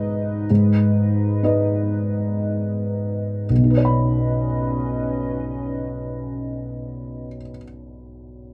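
A dry, close 1970s-style studio sound with light reverb frames this tender, hopeful neoclassical fragment in B major, cut from a longer piece, where a soft, felt-muted upright piano sits up front with intimate, vintage-toned accompaniment in a rubato 3/4 at 55-67 BPM, slowing through the first 3.5 seconds as the harmony moves from G#m to Badd9, while a deep, moody analog pad of detuned square and sawtooth tones, treated with chorus and phaser, holds slow-attack chords alongside it until 7.3 seconds.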